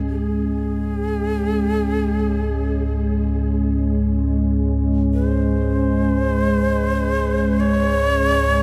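A deep, rumbling drone and a dark ambient pad open this desolate, ominous dark ambient excerpt from a longer piece, sounding together from the very start in free time. The drone sits low and up front, its triangle and sawtooth tones swelling in slowly and sustaining with a long release, colored by a phaser, subtle chorus and its own reverb. Above it, the pad holds sustained chords, a mellow, detuned sawtooth unison blended with sine and a sub octave, softened by chorus and reverb. From 0.1 seconds a breathy, end-blown bamboo shakuhachi carries the melody in a higher register, close-miked, with vibrato and tongued notes trailing into delay. The whole passage sits on a single C#5 chord and floats in a huge, wet reverb space with a decay of 7.7 seconds, lending the sparse sound a vast, brooding stillness.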